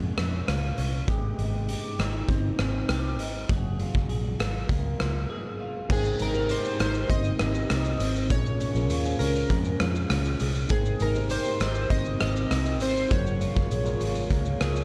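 Dreamy, sunny indie and bedroom pop cut from a longer piece, opening with a chorus-drenched, warbly twelve-string electric guitar under a filter sweep, a round, foam-muted vintage bass and a gritty, saturated garage drum kit with a punchy kick up front, before a break at 5.3 seconds gives way at 5.9 seconds to glossy, detuned retro synth keys carrying the melody over a bell-like tine electric piano set in the background, all in a dark production with a small-room reverb.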